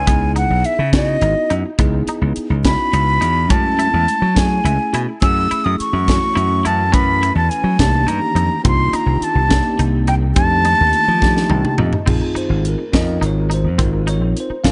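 A straight 6/8 pulse at 70 dotted-quarter beats per minute drives this intense, nocturnal slice of electric jazz fusion, cut from a longer piece. A crisp, polished drum kit with a high-tuned snare, punchy kick, hi-hat, toms and crash cymbal sits up front beside a bright, amped slap bass, while a breathy, close-miked concert flute carries the melody with a straight tone and soft attack until 11.7 seconds. Underneath, a bell-like tine electric piano plays clean accompaniment, and a twangy, picked electric guitar adds compressed stabs in the background, colored by analog chorus and analog delay. From 5.9 seconds a very quiet, glassy FM pad warbles in with ethereal sustained chords, slow attack and long release. The harmony moves through C#m9, F#m9, Cm9 and F13 before drums and electric piano share a fill leading to a closing Bb9sus4 at 12.1 seconds, all set in a small, airy studio room.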